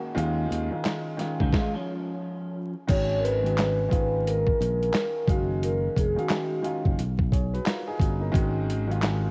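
Lo-fi hip hop with a nostalgic, reflective mood, this excerpt is cut from a longer piece and moves with a swung 4/4 feel. An upright piano with woody tone, long sustain and audible action noise plays the accompaniment throughout, softened by cassette tape and a low-pass filter. Alongside it, a slightly broken-up electric guitar through a small old amp adds a picked second line with chorus and analog delay until 2.7 seconds. The fingered electric bass is dark, round and punchy with transformer saturation, and it sits up front beside a gritty sampler-style soul kit with thumpy kick, medium-tuned snare, hi-hat, handclaps and crash. After a stop in the groove, a vibraphone played with soft mallets carries the melody from 2.9 to 6.8 seconds, its mellow, ringing tone shaded by slow motor vibrato and tape. The recording has a dry, home-cassette character with vinyl crackle, and the harmony moves through minor-seventh and altered chords.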